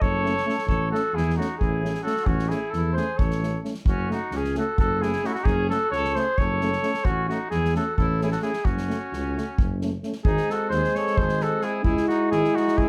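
A clear, vintage-toned flugelhorn carries a restless, virtuosic Balkan brass band melody up front from the start, joined at once by a distant, roomy trumpet with vibrato, a mellow, smooth-topped tuba bass and an acoustic drum kit of punchy kick and medium-tuned snare played with bundle sticks, all driving a fast 7/8 pulse at 263 BPM in F# dorian sharp4. At 0.2 s two euphoniums fill in the accompaniment, one dark and close-miked sitting in the background, the other warm with light vibrato. The harmony moves between F#m and A before turning to G# at 10.2 s and C#m at 11.8 s, and moderate studio reverb places the ensemble further back in the room in this short cut from a longer piece.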